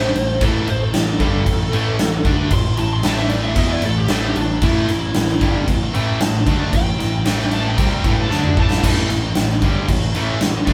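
A band playing live in one room fills a moderate small-room reverb in this aggressive, menacing hard rock excerpt, set in A minor at 114 BPM in a straight 4/4. A huge arena drum kit sits up front with a punchy kick, a medium-tuned snare, crashes and toms, while a picked electric bass, direct and amped, holds the low end from the background. Three rhythm guitars carry the riff beneath: a bright cranked stack, a very quiet high-gain part with a distorted edge, and a sludgy, double-tracked overdriven guitar that joins at 0.4 seconds. Over them, a lead guitar through a small cranked amp plays a warm, overdriven solo until 8.8 seconds, when a drum fill hands the music from its A minor passage onto an A5 power chord for the closing stretch, which runs to 10.7 seconds.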